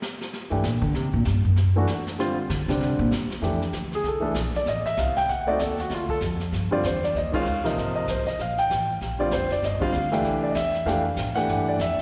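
Warm and sophisticated, this swinging jazz piano trio moves at a brisk 194 BPM in F major, cut from a longer performance. Brushes on a small-room kit set the pulse from the first moment, with dark cymbals, a medium-tuned snare and a boomy kick, while the pizzicato upright bass brings a woody tone and takes a solo through the opening 3.4 seconds. The grand piano carries the melody, polished and up front, with a slapback echo it shares with the drums. The harmony runs through colorful changes such as Gb, Adim, D(b9), Abadd9 and Bb69 before settling on F69, and the band hits accents at 7.3 and 9.8 seconds. The whole trio sounds like a live gig heard through the venue's PA, bathed in a lush recital hall reverb.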